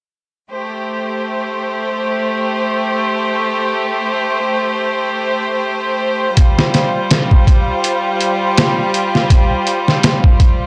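Cinematic and dark, this trip hop excerpt at 82 BPM in A minor opens with a clear chamber violin section holding sustained, bowed chords with light vibrato and a biting, earthy edge under vintage 12-bit sampler grit, moving from Am7 to G7sus4 as a compressed, pitched-down sampler-style drum kit with a thumpy kick, medium-tuned snare and hi-hat enters at 6.4 seconds, tape-warm and up front in a small room, all wrapped in light reverb and a dark, warm production.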